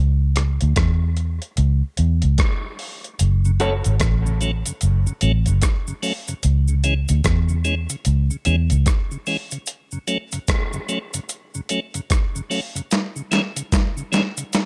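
Dry, close-sounding dub reggae excerpt in F# minor at 74 BPM, hypnotic and spacious with a swung sixteenth feel, where a dark, round, foam-muted electric bass sits up front until 8.9 seconds over a gritty, overdriven sampler-style drum kit with a thumpy kick, a cabasa enters at 3.2 seconds, a piping, scooped tonewheel organ with a stopped rotary speaker comes forward, a slightly broken-up picked electric guitar flashes briefly through dub echo at 3.6 seconds, and a drum fill closes the cut.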